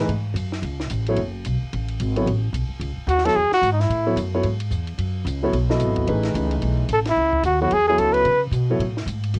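Spiritual and searching, this brief modal jazz excerpt in F# dorian swings at a brisk 220 BPM over a single F#m11 chord, with a mellow, dark concert grand piano comping and a thumpy, woody pizzicato upright bass anchoring the low end from the start, a dry cocktail drum kit with dark cymbals and a high-tuned snare carrying 12-bit sampler grit, and a close-miked trumpet with soft, scooped notes and light vibrato stepping forward in two short phrases at 3.1 and 6.9 seconds around a band accent at 7.0 seconds, all in a close, nearly reverb-free home cassette sound.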